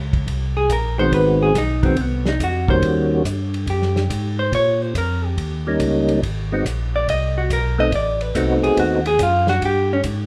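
Soul jazz organ trio with a swinging, greasy feel, cut from a longer piece. A fat, lightly overdriven tonewheel organ carries the bass line through slow rotary speaker and chorus vibrato, while a dry, smooth soul drum kit with a tight kick and rolled-off top sits low in the mix. A clean, picked hollow-body electric guitar, up front and featured as soloist, adds accompaniment, and from 1.0 s to 9.0 s a mellow, round percussive organ with key click and third-harmonic percussion plays the melody, the band captured live in one room with light reverb.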